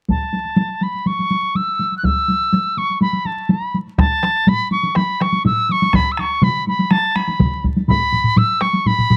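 Powerful and ceremonial, this short cut from a longer traditional taiko piece sets a reedy piccolo melody, pure in tone with vibrato and a crisp attack, over layered taiko ensembles struck with heavy sticks, one up front in a small room and another miked close. A further taiko ensemble joins at 4.0 seconds, the close one drops out at 8.0 seconds, and a brief burst of solo taiko drums on hard sticks rings out from a live room at 5.9 seconds. The studio sound is dry and 1970s in character, with a layer of vinyl crackle.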